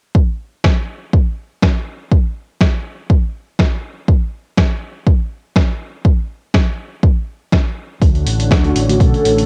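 A swung groove drives this funky, joyful filtered disco house excerpt: a dry, punchy, overdriven electronic kick opens it, and at 0.6 s a gritty, compressed sampler-style kit joins with sidechain-pumped hi-hats and a medium-tuned snare, both drum parts up front. At 8.0 s a round, amped fingered electric bass arrives alongside a lush vintage string machine playing sustained chords with slow-attack ensemble chorus, and shortly after a dark, detuned sawtooth synth brass with chorus, phaser, vibrato and a filter sweep steps forward. The bass, strings and brass all sit under a low-pass filter and pump with sidechain compression, while the whole cut carries the dusty grain of a home cassette recording in a close, nearly reverb-free space.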